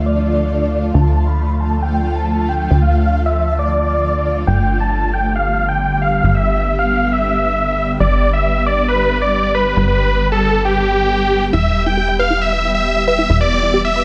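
A huge, detuned supersaw lead carries the melody through a low-pass filter sweep and delay, over a shimmering, ethereal pad with chorus, phaser and reverb and a punchy, funky analog bass, as the chords move from Dm to G to Em in this euphoric, emotional trance passage cut from a longer piece, with a tight, dark sequenced synth joining in the background with arpeggios at 11.5 s.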